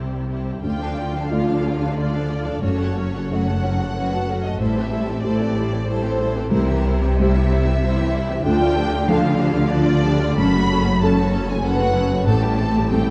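A felt-muted upright piano with audible action noise sits in the background beneath a lush, vibrato-rich violin section carrying the melody over a smooth, even second violin line, expressive viola and cello sections with portamento, and a focused, up-front double bass section, while a mellow French horn section enters at 1.3 s with sustained chords in this bittersweet, sorrowful cinematic film score that moves in a rubato 3/4 through a moderate scoring-stage reverb with a dark, warm production.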